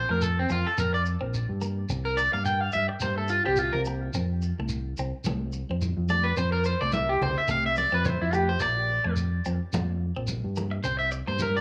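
A twangy, slightly broken-up electric guitar leads this short highlife guitar band piece with picked arpeggios, colored by cassette tape and analog delay, while a round, punchy fingered electric bass sits up front beneath it. A clean, compressed second guitar with phaser and tape adds quiet accompaniment, a grainy shekere shuffles along, and ringing, hard-handed congas join in the background at 4.1 seconds. The whole excerpt moves at a carefree, danceable 107 BPM with a light swing in F major, passing through Bb5, C5, F and Bb chords, and has the small-room ambience and light reverb of a home cassette recording.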